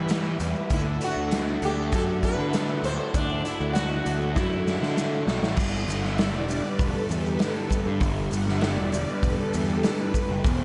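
A dreamy, reverb-soaked mix with a dulled top carries this mysterious, trippy psychedelic rock fragment at 99 BPM, where a buzzing, shimmering sitar melody with delay rings out until 5.2 seconds over a double-tracked phaser fuzz guitar riff, an up-front overdriven fuzz bass, a punchy, rolled-off garage drum kit with a fill into 5.6 seconds, very quiet grainy maracas, and a vintage sawtooth string machine of violas whose soft, chorused chords move from Em and Dadd9 into a solo on G5.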